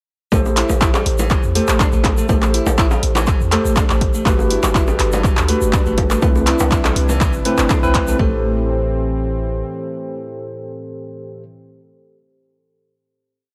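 Earthy, spiritual afro house in which a punchy overdriven kick and a gritty deep house kit of claps and hats drive a boomy 808-style bass, a bright fingerpicked nylon-string guitar looping a sixteen-step pattern, tremolo-laced tine electric piano stabs, high-tuned bongos and a grainy tube shaker, with the bass, guitar and electric piano pumping in a dry small room, before a smooth chorused analog pad enters at 4.3 seconds and carries the electric piano through a closing chord from 8.2 to 12.1 seconds.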